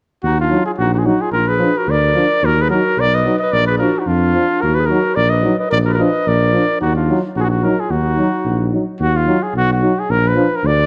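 A mellow, vibrato-laden trumpet leads up front in this fiery, restless Balkan folk excerpt at 110 BPM in a swung 2/4, with a dark tuba anchoring the bass just as prominently. Behind them, a warm clarinet weaves a second line through tape echo until 8.7 seconds, and a soft-attack French horn sits in the background too, while a euphonium joins it; both have light vibrato and supply classical-style accompaniment. The harmony in Eb harmonic minor swings between Ebm and Bb, set in light reverb for a dusky, rounded production.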